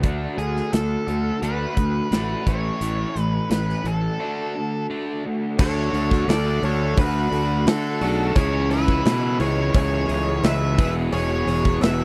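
A growly, punchy fuzz bass sits up front beside a big acoustic rock drum kit, its punchy kick, medium-tuned snare, hi-hat and crash cymbal driving this sunny, straight-ahead classic rock excerpt in 4/4. Two overdriven rhythm guitars play riffs farther back: a lo-fi garage guitar and a bright, cranked stack guitar. From 0.4 seconds a dark octave-fuzz lead guitar carries the melody, its distorted tone trailed by slapback echo. After a break at 4.2 seconds, the arrangement fills out at 5.6 seconds: a nasal lead guitar with a parked wah adds a second line in the background, while a reedy electric piano, a boxy acoustic archtop, a metallic cowbell and a shouting tonewheel organ through a rotary speaker sit very low in the mix. The sound is dry and close, with the character of a 1970s studio session.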